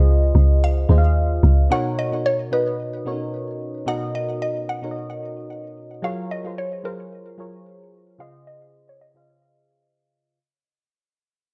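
A 4/4 groove at 111 BPM carries a 55% swing on the sixteenths, giving this relaxed amapiano excerpt in B lydian a gently loping feel, tuned slightly flat to A4 = 435 Hz. It opens on a drop, with a deep, round log drum bass sitting dark and up front for the first 1.7 seconds before it stops. A mellow FM electric piano supplies warbling, vintage chords through chorus and a low-pass filter, moving through lush major-ninth harmonies from C#maj9 to Bmaj9, F#maj9 and back to C#maj9. Over it, a woody, mallet-like synth pluck carries the melody, its decaying notes shaded by chorus, phaser, a low-pass filter and digital delay. From 1.7 seconds a filter sweep unfolds as the piece fades out, all of it set in a light reverb.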